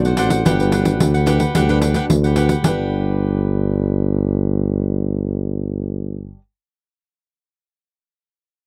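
A dry, close studio sound from the 1970s frames this lively, playful samba and choro fragment in G major at 110 BPM, where a mellow tuba with light vibrato carries the bass up front, a jingly pandeiro drives the rhythm until 2.8 seconds, a bright, crisp picked cavaquinho adds accompaniment, and a dark, thumb-plucked nylon-string guitar sits in the background over a Gmaj7 chord.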